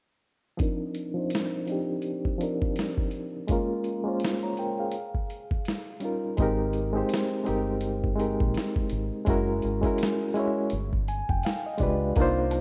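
Melancholic and hazy, this lo-fi hip hop fragment in C minor moves at 83 BPM with a gentle 16th-note swing. A reedy, bright electric piano with fast tremolo and a filter sweep carries chords from Cm11 through Abmaj9 to a closing G7b9, with a short fill near the end, while a compressed, pitched-down sampler drum kit with a thumpy kick sits up front. A dark, round fingered bass joins at 6.4 seconds, and a faint egg shaker and woodblock appear in the background only at 12.2 seconds, all within a rough home-demo cassette sound bathed in lush hall reverb.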